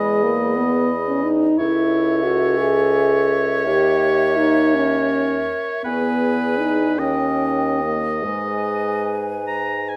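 Classical chamber music for wind quintet, this slow, elegiac and solemn romantic movement in 6/8 unfolds with rubato in a passage cut from a longer piece. An airy, hollow flute with vibrato carries the melody above a clear oboe second line, while a dark, smooth clarinet sits in the background and a mellow French horn with light vibrato, the most prominent voice, holds the accompaniment until 9.5 s. A distant, roomy bassoon supplies the bass, and the quintet sounds within a wet recital hall reverb.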